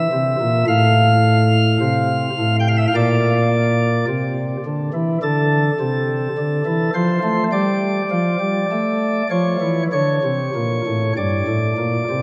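Dark and grave, this brief excerpt of a classical chorale-style piece moves with a free, rubato pulse as a solo pipe organ, voiced with light, brilliant baroque flute stops that speak with a crisp chiff and sit up front, spans a range from G2 to G5 through a progression closing on an open D fifth, all bathed in a wet church reverb.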